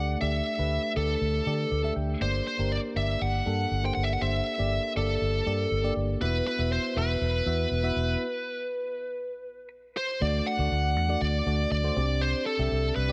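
A straight 4/4 groove at 120 BPM drives this short excerpt of 1980s-style pop in D mixolydian, romantic and uplifting in mood, with the harmony moving from Dsus4 through Gm and Esus2 before settling on D at 10.2 seconds and then Csus2. A dark, foam-muted fingered electric bass sits round and up front, while a glassy FM electric piano with a bell-like attack and chorus warble adds a brief fill at 1.5 seconds. A bluesy, distorted lead guitar carries the melody with tape echo, and the band halts for a stop between 8.2 and 10.2 seconds before the final section, all in a light reverb.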